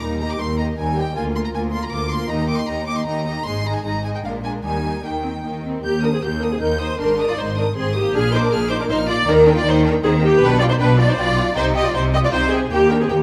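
A concert hall's moderate reverb surrounds this short cut from a longer, quick classical-period movement for string orchestra in triple time, its mood dramatic and stormy. A violin section carries the high melody with focused, vibrato-laden bowing, while a second violin line sits beneath it, softer in attack and intimate, both sections playing throughout the 13.2 seconds. The viola section stands up front as the most prominent voice, its lush, intense tone filling the accompaniment. Underneath, the cello section adds a focused, rich bass, paired with a dark, expressive double bass section. The harmony keeps returning to the home chord, with the phrase heard twice, the second statement beginning at 5.8 seconds.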